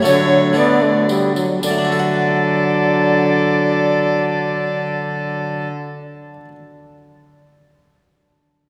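A lush church reverb with a long tail surrounds this brief, festive excerpt of a courtly Renaissance-style consort dance in D major, moving in 3/4 at 110 BPM with a straight feel. The bright tenor recorder carries the melody, its airy wooden tone marked by a crisp chiff and gentle vibrato, while a single close violin with a rich gut-string, period-style sound plays a second line beneath it. A distant, warm solo trombone and a dark, bowed period cello placed up front give the ensemble its low middle and bass. A dry, plucked Flemish-style harpsichord sits in the background, and a jingly tambourine adds sparkle near the start. The opening passage slows down until about 1.6 seconds before the dance moves into its next section, and the other parts stop at 5.7 seconds, leaving the harpsichord to ring on alone until 6.6 seconds.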